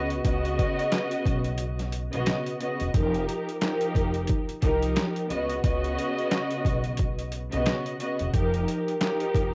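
Lightly reverberant with a home-cassette character, this reflective, dark boom-bap hip-hop excerpt at 89 BPM with 16th-note swing sets a lush, bowed string section (sul tasto, soft-attacked and vibrato-rich, cassette-tape colored and filtered, sitting up front) over a woody pizzicato upright bass and a gritty, compressed, pitched-down, overdriven sampler drum kit of thumpy kick, medium-tuned snare, hi-hat and handclaps, moving between Db9sus4 and F9sus4 chords, with a break from 1.6 to 2.9 seconds.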